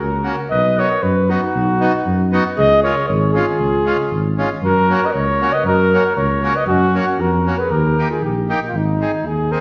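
Heard from further back in a recital hall, this short cut from a longer piece sits in a generous reverb with a 1.4-second tail, giving the alpine dance band a roomy, airy glow. The mood is jolly and bouncy alpine folk in a straight two-beat metre, with the harmony moving through B, C#, F#, D# and Ab. A mellow flugelhorn carries the melody up front in a classical style. A smooth-topped clarinet traces a second line from the background until it drops out at 8.6 seconds. Beneath them, a dark, close-miked tuba holds down the bass prominently, while a reedy accordion enters at 0.2 seconds with mid-forward accompaniment.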